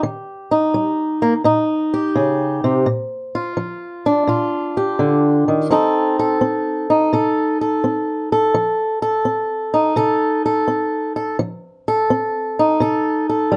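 A dark, warm recording places a lone acoustic guitar up front in a small room, with a moderate touch of reverb around it. The piece is a laid-back, rollicking blues at 84 BPM in 4/4, with a swung eighth-note feel. The fingerpicked guitar has a boxy tone and ranges from Bb2 up to A4, playing in a swing style throughout. Over roughly 13.6 seconds, it moves from Eb7 to Bb at 2.9 seconds and on to F7 at 5.7 seconds. This short passage is cut from a longer piece, and its unhurried swing gives it an easy, relaxed charm.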